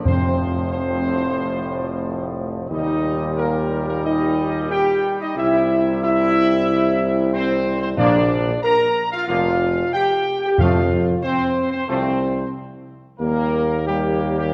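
Classical ceremonial fanfare at 91 BPM in a regal, majestic mood, where a warm trumpet section with light vibrato and soft attack carries the melody over sustained chords from dark, distant French horns and clear, vintage-toned trombones, an up-front tuba anchors the bass, and calf-head timpani struck with medium mallets sound close and dry at the start and again from 8.0 to 11.5 seconds, all moving through F, Eb, C and Bb in a reverberant concert hall in this short excerpt from a longer piece.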